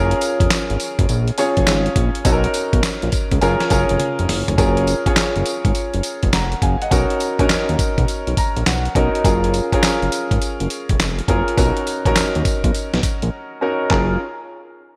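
A swung sixteenth-note groove in 4/4 drives this upbeat, flirty new jack swing excerpt on a gritty, compressed sampler-style drum kit with a thumpy kick, medium-tuned snare, hi-hat, handclaps, tambourine and toms; the drums play a fill at 4.0 seconds and fall briefly silent at 13.3 seconds. Beneath them, a fat, detuned sawtooth analog bass holds the low end with saturated, sustained notes, while a clear, polished grand piano with lush chorus sits up front, playing rich major-ninth harmony and adding a fill at 8.1 seconds. The bright, 1980s-style digital production places the parts in a spacious hall reverb.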